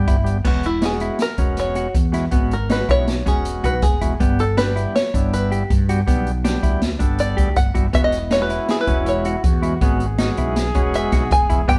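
An open-back banjo, tonewheel organ and fretless bass begin together, with clean electric guitar and an open jazz drum kit joining a moment later in this bright, driving progressive instrumental cut from a longer piece, moving at 160 BPM in a straight 5/4. From 0.5 seconds the fingerpicked banjo takes a solo, its twangy, plunky, percussive tone sitting up front over harmony that moves from E6 to G at 4.2 seconds and back to E6. The reedy organ speaks through a stationary speaker, while the dark, compressed guitar supplies fingered arpeggios and the round, direct-and-amped bass holds the low end. The acoustic kit is the most prominent part, up front with dark cymbals, a medium-tuned snare and a boomy kick, heard with crash, hi-hat, snare and kick. At 7.9 seconds a mellow flugelhorn adds a smooth-topped second line with vibrato in a jazz style, and the whole band plays live together in a stone room with moderate reverb.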